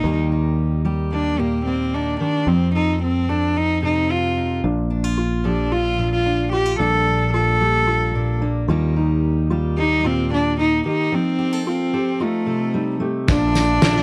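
A dark, lightly reverberant, warm production frames this anthemic indie folk excerpt, where a close, nasal cello carries the melody with light vibrato and an airy sul tasto bow over a full-bodied fingerpicked steel-string acoustic guitar and a round, up-front picked electric bass. A mellow, woody upright piano adds arpeggios from 4.6 seconds, and after a break beginning at 11.1 seconds the building arrangement arrives at 13.3 seconds. There the fingerpicked guitar stops, and a muffled, gritty, cloth-damped drum kit with a fat snare and tight kick enters alongside a distant, jingly tambourine, a background picked acoustic guitar and a barely audible clear concert grand piano.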